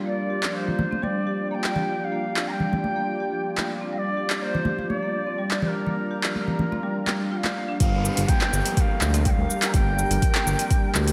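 Opening this hypnotic, spiritual afro house excerpt at 124 BPM in G minor pentatonic, a detuned sawtooth pad with chorus and sidechain pumping sustains a Gm7 chord, joined almost at once by an airy, reedy bansuri melody with vibrato and tape echo, marimba arpeggios on medium hard mallets, an up-front afro-pop kit of handclaps, metallic hi-hat and shaker, and bright, soft-handed congas, until the drop at 7.8 seconds brings in a deep electronic kick, a smooth, gliding, wave-folded synth bass with portamento and a background downlifter, the whole dreamy mix soaked in lush hall reverb.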